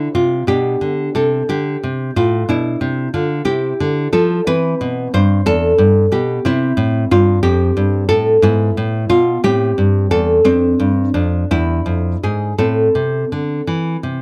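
A solo nylon-string guitar opens this short excerpt from a longer piece, fingerpicked and placed up front in a close, detailed recording. The music is a classical, baroque-style dance in 6/8 with a rubato feel, unhurried and flowing in an introspective mood. The guitar's tone is dark and woody, with the full-bodied resonance of old strings, reaching from its low bass register up into its upper range. Around 6.5 s the harmony turns toward a more shadowed, minor-leaning color, moving through a chain of chords toward a resolving cadence near 12.6 s. A light reverb lends a touch of space while keeping the intimacy of the close sound, and the guitar carries the whole passage alone until it breaks off at 14.2 s.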